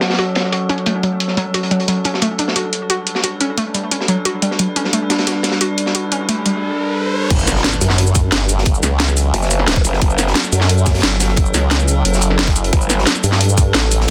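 A saturated, growling bass surges up front at the drop at 7.3 seconds in this tense, aggressive dark technical drum and bass cut at 177 BPM in F# phrygian, joined by a tight electronic kick and, moments later, a detuned formant-sweep wobble bass, while from the start an eerie, metallic FM drone with a filter sweep holds sustained chords, a lo-fi, warbling pluck with 12-bit grit and delay spins arpeggios until 6.5 seconds, a drum and bass kit drives cracking snare and metallic hats over a dark, gritty breakbeat kit in the background, and a riser builds into an impact, with the mix given light reverb and a dense, heavily limited master.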